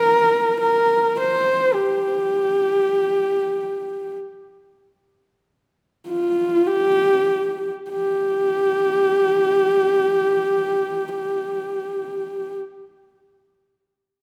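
A lone horsehead fiddle opens this solemn, windswept fragment of Mongolian folk music, bowed by one player on horsehair strings in free time. Its dark, husky tone sits close and up front, with a woody grain, vibrato and portamento colouring a narrow melody between F4 and C5 in the G yu mode. From 1.1 to 7.9 seconds the line slows, drawing out the opening phrase before a second passage begins. That later passage runs to 12.0 seconds, and the fiddle sounds on until 12.6 seconds. A generous, wet reverb from a large scoring stage surrounds the instrument and lends the solitary voice a sense of open space.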